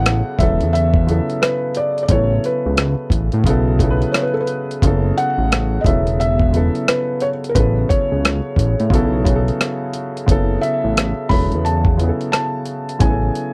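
Soulful and smooth, this neo-soul R&B excerpt moves at 88 BPM in 4/4 with a swung sixteenth-note feel, cycling through Esus4, Aadd9, B9sus4 and F#m7 before settling on Amaj9 at 13.0 seconds. A soft, felt-muted upright piano carries the melody with audible action noise and a slapback echo, while a woody, slightly detuned upright piano supplies the accompaniment beneath it. A fat, sawtooth-edged analog bass with a filter pluck and a gritty, overdriven sampler-style drum kit with a thumpy kick, hi-hat and rim click sit up front in a dry, close 1970s-style studio sound.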